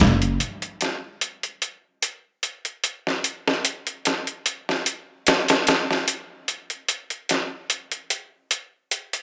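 Melancholic and hypnotic, this short trip hop cut moves at 74 BPM in 4/4 with a gentle swing on the sixteenths. A sampler-style drum kit carries it alone from 0.0 to 9.2 seconds, its hi-hat and medium-tuned snare pitched down, compressed and gritty, with overdrive and high-pass filtering. The drums sit up front in a light reverb with a digital ambience.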